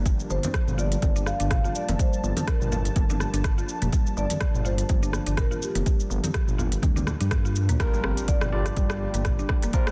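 A deep, layered electronic kick sits up front in this hypnotic, spiritual afro house cut at 124 BPM in G minor, alongside a rumbling, detuned saw bass and a tape-warm afro-pop kit of smooth hats, rim clicks, shaker and toms, with soft clipping on the snare. Over a Gm7 chord, a mellow analog pad and a woody FM pluck arpeggio pump against the kick in the background, while a soft-mallet marimba carries a round, dark melody with dub echo and thin-skinned congas patter quietly until 7.2 s. At 7.8 s the drop arrives with barky, bright tine electric piano stabs and a very quiet electronic impact, all inside a dense, heavily limited mix with little reverb.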